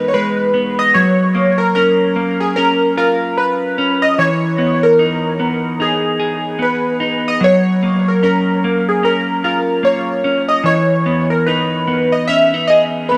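Round, detuned analog keys carry the melody from the opening beat, their sawtooth tone shaped by a filter sweep, phaser, lush chorus and dub echo, while a clean, picked electric guitar plays warm accompaniment beneath with subtle chorus, warbly pitch drift and its own dub echo. This nostalgic, dreamy indie pop fragment, cut from a longer piece, moves at 74 BPM in 4/4 with a swung sixteenth-note feel in F# major, rocking between Emaj7 and F#maj7. Both parts sit up front in an echo-heavy mix with light reverb throughout the 13.2 seconds.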